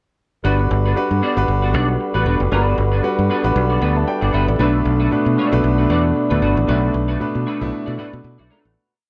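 Celebratory and danceable, this short disco piece moves at 115 BPM in 4/4 with a light sixteenth-note swing, set in G major and shifting from Gmaj7 to Bm7 at 4.6 seconds. A fingered electric bass sits up front with a direct, warm tone, playing a syncopated disco line dotted with muted ghost notes. A clear concert grand piano, also forward in the mix, adds syncopated chords in spread voicings with short fills and a deep low end. A semi-hollow electric guitar, clean and picked, supplies choppy sixteenth-note disco rhythm treated with analog chorus. Behind them, a mellow French horn section holds a loose, classical-style sustained pad that sounds distant and roomy, all within a small room's light reverb, before the groove fades out from 6.7 to 8.8 seconds.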